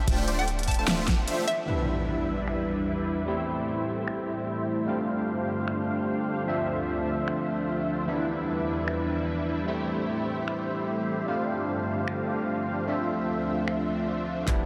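Emotional and bittersweet, this future bass fragment moves at 150 BPM in a swung half-time 4/4, with huge, lush detuned supersaw chords up front, pumping through chorus, filter and delay over a Dm9, Em7, Am7, G9sus4 cycle. A layered, overdriven dance kit with a massive snare, claps, snaps, hats and crash runs through the whole fragment. A brief opening drop pairs a deep, boomy 808-style bass and a knocking electronic kick with a hollow, bouncy square pluck in the background. At 1.7 seconds an electronic impact ushers in a bright, barky, gritty electric piano and a soft, breathy pad under a long filter sweep, before bass and kick return with a drum fill at 14.5 seconds, all bathed in dreamy, cavernous reverb.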